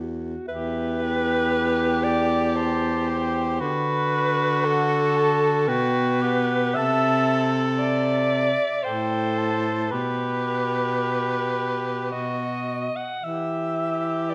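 Classical chamber music for a single-reed quartet, this lyrical excerpt in E minor moves at a slow 54-59 BPM in 3/4 with a rubato feel and a yearning, melancholic mood. The bright alto saxophone and the close-miked baritone saxophone open together at 0.0 seconds, both up front, the alto carrying a second line with vibrato and a smooth top while the baritone holds the bass with light vibrato. At 0.5 seconds the dark clarinet takes the melody, set somewhat back in the blend, and the clear tenor saxophone joins with a soft attack and light vibrato, giving gentle accompaniment in a narrow middle range. The harmony settles through E minor, B minor, A minor and G chords before a B major chord turns back to E minor near 13.2 seconds. A recital hall reverb adds a wet, resonant space around the four reeds.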